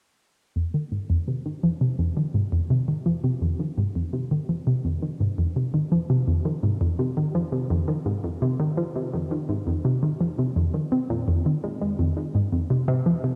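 A straight 4/4 pulse at 84 BPM carries this mysterious, cosmic ambient fragment in F minor, tuned slightly flat to A4 = 437 Hz and cut from a longer piece. A lone analog pluck plays a riff from 0.6 to 13.4 seconds, spanning F2 to C4. It has a round sawtooth and square-wave tone with a noise layer, a fast attack and a decaying tail, sits up front with chorus and delay, and is shaped by a filter sweep. A moderate plate reverb with a 3.4-second tail and an echo-heavy mix give the sound a spacious, drifting depth.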